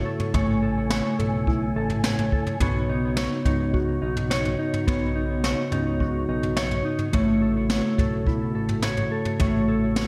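A mellow, fingered electric guitar opens this short dream pop excerpt, its dark, clean arpeggios sitting up front and shimmering through analog chorus and delay, while a soft, flute-like tonewheel organ holds sustained chords through a fast rotary speaker. Beneath them, a retro, glossy synth bass built from pulse and sawtooth tones with ring modulation and a filter sweep anchors the low end with sustained, chorused notes. At 0.2 seconds a jazz drum kit played with brushes joins, its boomy kick, medium-tuned snare and toms placed up front and given a gated reverb. The harmony drifts from A6 to Badd9 at 2.6 seconds and back to A6 at 7.1 seconds, keeping a floating, ethereal mood in A lydian at a straight 106 BPM in 4/4. A lush hall reverb and bright 1980s-style digital production bathe the mix in a wet glow.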